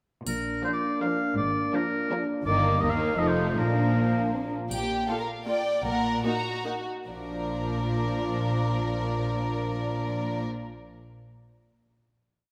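A clear, lightly vibrato oboe sings up front through the opening of this magical, mischievous cinematic cue in 3/4 and Bb major, which moves at 137-167 BPM before slowing into a brief coda. Beneath it, a warm French horn section holds background chords. Hushed sul tasto strings mix bowed sustains with pizzicato chords: one violin section carries a tune while a dark, soft-attack violin section adds a counter-melody, violas float after-beat chords, and cellos and double basses anchor the bass. A bright triangle sparkles at the start and again at 4.7 s, and the strings settle onto a final Bb chord at 7.1 s, bathed in the long reverb of a scoring stage.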